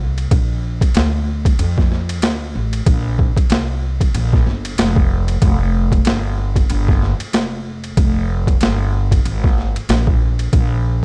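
A swung 16th-note groove at 94 BPM in 4/4 sets a cool, nocturnal jazz-hop mood in this short hip hop cut from a longer piece. The upright bass opens at 0.0 seconds, plucked pizzicato on gut strings, its woody, thumpy tone sitting up front in a low register. The boom bap sampler-style kit joins at 0.2 seconds with kick, snare, hi-hat and ride cymbal, sounding compressed, pitched down and gritty, with a high-tuned snare and overdrive on the kit. Those drums carry a roomy character from being re-recorded in a large space, yet they stay close and forward, and they stop at 10.7 seconds while the bass rings on. The overall production is dark and warm with little reverb, and the piece shifts into a second section around the midpoint.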